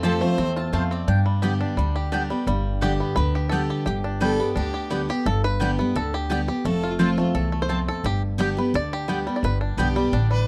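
A driving, virtuosic bluegrass passage cut from a longer piece opens with twangy fingerpicked banjo carrying the melody over bright, full-bodied picked acoustic guitar up front, thumpy pizzicato upright bass and woody mandolin stabs, at 172 BPM in G mixolydian, moving between F and G chords. A second mandolin adds a brief melodic figure at 0.6 seconds, and the banjo takes a solo from 2.5 seconds while a clear, focused fiddle with light vibrato, heard briefly at the very start, returns on a second line at 4.2 seconds. The sound is a dry, close 1970s-style studio recording with a small room ambience.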